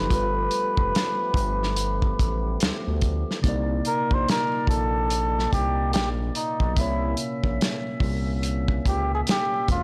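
Blown-out and overdriven with studio reverb, this sultry, introspective neo-soul R&B excerpt at 72 BPM in C dorian sets a veiled, breathy cup-muted trumpet with slapback echo up front, taking a jazz-style solo from 3.4 seconds, over a mellow tine electric piano in the background, a fat tonewheel organ with key click through a fast rotary speaker, a smooth gliding detuned synth bass with transformer saturation, and a warm soul drum kit with a tight kick entering at 0.1 seconds, while the chords move through G9, Cm9 and C7b9.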